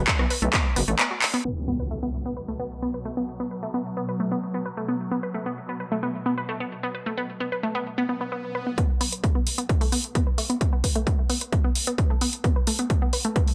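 A detuned sawtooth unison pluck leads this dark, industrial slice of driving peak-time techno at 131 BPM, its bright, warbling riff running from 0.2 to 13.4 seconds with tube saturation, cassette-tape character, sidechain pumping and delay. A growling FM bass with sidechain pumping opens the cut alongside a tape-warm, layered electronic kick and an overdriven analog drum machine of handclaps, hi-hat and rim click, the hats pumping and high-passed and the snare high-passed, all under gated reverb. A drum fill at 1.2 seconds gives way to an electronic impact, and the drums drop out while a filter sweep runs over a B5 chord. A swarming, wave-folded drone of detuned sine and triangle layers fades in slowly with granular texture and its own reverb, tense and evolving beneath the pluck until a swell arrives at 8.1 seconds. At 8.8 seconds the heavy kick and drum machine return over an Asus2 chord for a build-up, all set in a moderate plate reverb with bright, 1980s-style digital production.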